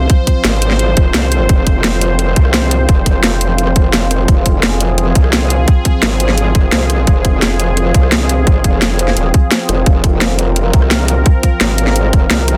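Dark technical drum and bass with a tense, futuristic mood, this cut from a longer piece sits on a single F minor chord throughout. An aggressive, wobbling growl bass with a formant-filtered, saturated edge pumps up front beneath an airy, detuned sawtooth pad that holds resonant sustained chords with a noise layer and a bright sheen. A tight, overdriven electronic kick leads the mix, joined by a layered kit of cracking snare, rim clicks and crisp hi-hats, all inside a digital ambience and a dense, heavily limited modern master.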